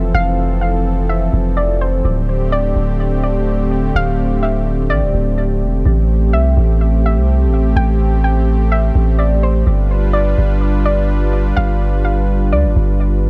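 Ethereal and melancholic, this half-time atmospheric cloud-rap excerpt drifts over a deep, long 808-style bass that sits up front with a fast attack and sine-like decay, beneath a smooth, detuned sawtooth pad holding sustained chords with a slow attack and chorus. A soft, round pluck carries the melody in a mellow upper register, its triangle and sine tones layered with noise, ring modulation and a filter sweep, then colored by chorus and analog delay. The mix is dry in terms of room but echo-heavy, with the harmony moving from Fmaj7 and D7sus4 into Am7 at 5.9 seconds and G7 at 9.7 seconds.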